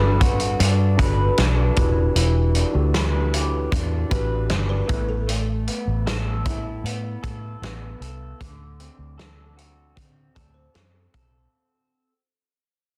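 A loose, straight 4/4 groove from an acoustic indie drum kit sets a laid-back, sunny bedroom-pop mood, its punchy kick and medium-tuned snare sitting up front with a gritty, saturated edge and a rolled-off top. Underneath, a vintage muted fingered electric bass adds a dark, round, foam-muted low end. An electric guitar through a small old amp carries the accompaniment, slightly broken-up and lo-fi, smeared by lush chorus, warbly pitch drift and plate reverb. A mellow, clean tine electric piano shares that role only until 5.3 seconds, and from 4.5 seconds a buzzing kalimba takes a second line in the background, woody and hollow with a thumbnail pluck, dressed in ensemble chorus, slapback echo and plate reverb. The harmony moves through Gmaj7, Em7, Asus2 and D7 in a dense, heavily limited mix with light reverb, and this short cut from a longer piece fades out across its length.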